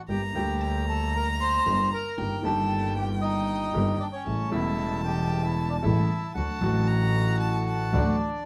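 A reedy, vintage-toned bandoneon carries the melody up front in this dramatic, passionate tango fragment, moving at 115 BPM with a rubato feel through Gm, Eb/G, A7 and D. A single bowed violin adds an expressive second line with vibrato, portamento and a soft attack, while a smooth grand piano supplies accompaniment and one bowed double bass anchors the low end with an earthy tone and light vibrato. Moderate studio reverb gives the whole a dark, warm sound.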